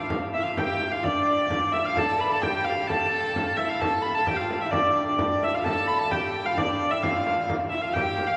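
A nasal, reedy hurdy-gurdy carries the melody up front in this driving, ancient-sounding medieval dance at 130 BPM in D dorian, joined by a shimmering hammered dulcimer in the background and a rich, boxy viola da gamba with light vibrato on second lines, while a deep frame drum played with soft hands enters at 0.1 s, and the opening phrase returns at 5.7 s in a church-like space washed in long cathedral reverb, all cut from a longer piece.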